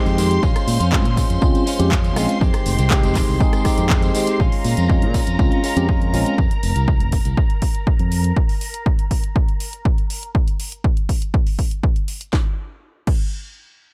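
This filtered disco house excerpt opens at 121 BPM in Bb dorian with a funky, groovy drop: a phased, gritty tine electric piano, a bright twangy clean guitar riff, lush sawtooth string-machine chords with ensemble chorus, and a warm fingered bass all pump against a punchy, tape-toned electronic kick that lands at 0.4 s, over an overdriven house kit of cracking snare, bright hats and handclaps and a band-limited tambourine in the background. The chords move from Bbm7 to Fm9 and back to Bbm7 as a filter sweep begins at 4.4 s, with the piano and guitar dropping out around 6.4 s and the bass by 8.3 s. The tambourine and strings fall away by about 10.4 s, and the kick and drum kit then carry on alone to 13.2 s in this dark, dry mix.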